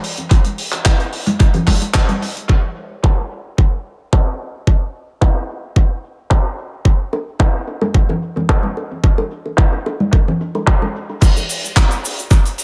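Nu-disco at 110 BPM in a straight 4/4, this short cut from a longer piece feels sensual and cosmic, built on a tight, natural-sounding funk kit with crash, handclaps, hi-hat and shaker, its hats, cymbals and snare dulled by low-pass filtering and trailed by analog delay. An overdriven, knocking electronic kick sits up front from 0.3 seconds, while bright, vintage congas and bongos played with soft hands drift in briefly at 1.3 seconds and return from 7.1 to 10.9 seconds, carrying their own analog delay. The echo-heavy mix sits in a small room, and a drop arrives at 11.2 seconds.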